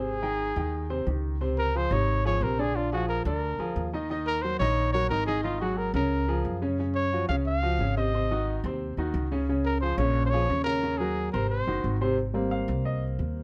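Afro-Cuban jazz, lively and danceable, in which a warm, vibrato-laden trumpet carries the melody up front until 12.0 seconds over a clear, intimate grand piano with audible action noise and a woody pizzicato upright bass, before the piano takes a solo over the bass from 12.2 seconds in this short cut with light reverb.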